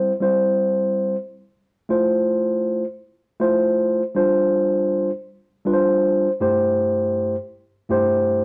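Soul in an uplifting, warm mood, this short fragment of a longer piece features a lone tine electric piano playing solo for its full 8.4 seconds. The piano has a mellow, clean tone that sits direct and up front, spanning from G2 up to C5. The rhythm carries a relaxed swing on the eighth notes in a steady four-beat metre. A brief opening on C gives way at 1.9 seconds to a longer passage that moves through Fmaj7, G7sus4 and C6/G. A moderate studio reverb adds a gentle sense of room around the instrument.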